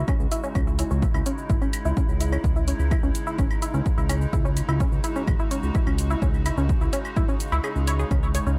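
A fat, saturated analog bass sits up front, its detuned sawtooth tone holding low on C# minor beneath a punchy, tape-warm electronic kick that drops out briefly at 7.6 seconds in this dark, cinematic melodic techno piece at 127 BPM. Above them, a tight, nasal sequenced synth plays driving arpeggios with ring modulation, chorus and tape echo, while an evolving wavetable pad of morphing, warbling sine tone holds sustained chords, both pumping against the kick along with the bass. Electronic shaker, claves and warm hi-hat add a faint layer through analog delay, and the whole mix carries light reverb and plenty of echo.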